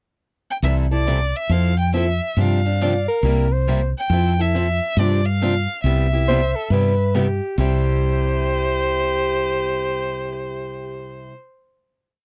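Acoustic string swing in the jazz manouche vein, lively and swinging, with a warm, smooth bowed violin up front carrying a motif-based melody of call phrases from 0.5 seconds, over a round, punchy fretless electric bass playing a two-beat root-and-fifth line. Two bright, boxy steel-string guitars sit in the background, one playing four-to-the-bar rhythm with short accents on two and four and the other adding a second rhythm part, while a breathy, whispered soprano saxophone enters at 2.8 seconds with soft-attack answering phrases in the melody's rests. The dry, close studio sound has a 1970s feel, and this short complete piece closes on a held final chord from 7.6 seconds.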